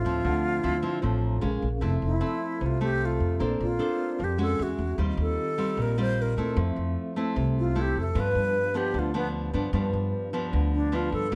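An airy alto flute with vibrato takes the lead in this breezy, romantic bossa nova excerpt at 152 BPM, soloing from 1.8 seconds over woody pizzicato upright bass, fingerpicked nylon-string guitar with audible finger squeak, and a mellow, ringing vibraphone in the background that adds a brief fill at 1.0 seconds, all set in light reverb with a dark production as chords move from Dm9 through Fmaj7 to G7.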